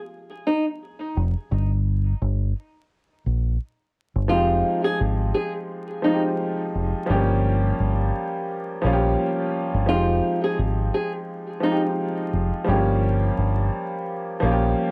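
Reflective and dark, this boom-bap hip-hop excerpt moves with a lightly swung 4/4 groove. A fingerpicked flamenco guitar carries the melody from 0.5 seconds, sitting up front with an acoustic, filtered tone softened further by cassette tape saturation and tape echo. The deep dub fingered electric bass enters at 1.2 seconds, round and direct, with an amped, low presence beneath the guitar. At 4.3 seconds a woody upright piano joins as accompaniment, smooth and vintage in character with long sustain, also filtered and treated with cassette tape, as the harmony alternates between Fm9 and Gm7b5. The whole takes on the feel of a home recording on cassette, with vinyl crackle giving it a dusty, lived-in atmosphere.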